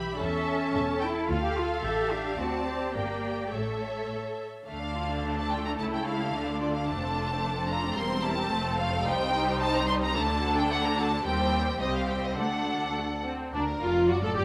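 A lush studio string orchestra sound sits in a moderate scoring-stage reverb, with the first violins placed up front. This is a quick, restless classical-period movement in D minor at 109 BPM in a straight 2/4, an urgent passage cut from a longer piece. The first violin section carries the melody from D4 up to C6 with a focused, vibrato-rich tone, while the second violins trace a warm supporting line beneath. Violas fill the middle with an even accompaniment, and the cellos, entering at 0.1 seconds, join the double basses on the bass line, the basses reaching down to E1 with a rich, bowed depth. The harmony moves through D minor, G minor and A before an F-centred passage, then shifts to C minor and D, with the second section beginning at 4.7 seconds and closing on a Bb chord at 13.5 seconds.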